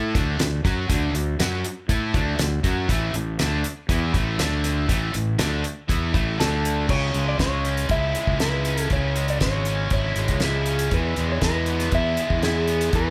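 A straight, driving 4/4 groove from a damped 70s drum kit with a fat snare and tight kick drives this sunny classic rock cut alongside a bright, double-tracked distorted electric guitar riff and a growly fuzz fingered bass, which push through D5 and A5 power chords before an electric slide guitar enters at 6.4 seconds with a slightly broken-up melody as the harmony moves to C#m and E, all captured as a band playing live in one room with light reverb.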